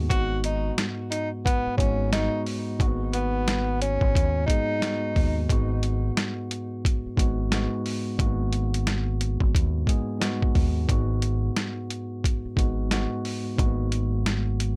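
Boom-bap hip-hop at 89 BPM in G# minor with a swung 16th feel, this tough, reflective excerpt sits on a single G#m7 chord, with a compressed, gritty, pitched-down sampler-style drum kit (thumpy kick, medium-tuned snare, hi-hat) up front over a dark, round fingered electric bass. A mellow tine electric piano with a cassette-tape tint comps clean and up front throughout. A breathy tenor saxophone plays a jazz-style solo with subtone, light vibrato, scooped notes and delay, and it falls away at 5.4 seconds, leaving a dry, close-sounding groove.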